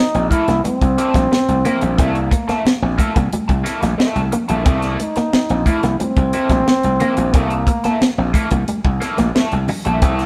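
Funk at 90 BPM in 4/4 with a straight feel, this short strutting, playful passage sits in C mixolydian over a C6 chord and is cut from a longer piece. A breathy, mellow trombone carries the melody up front in a close-miked jazz style with light vibrato, playing from the start until about 8.3 seconds. Beneath it, a tight funk drum kit sounds dry and polished, with a high-tuned snare, a tight kick and hi-hat, while a gritty, punchy slap bass, bright and overdriven, drives the low end. An electric guitar with an envelope filter and a vibrato effect plays a clean, compressed, fingered riff in the background, joined by a raw garage guitar, picked and overdriven with wah, adding accompaniment. Very quiet congas with a thin skin add close, bright percussion, and the whole band plays live together in one room with a moderate stone room reverb.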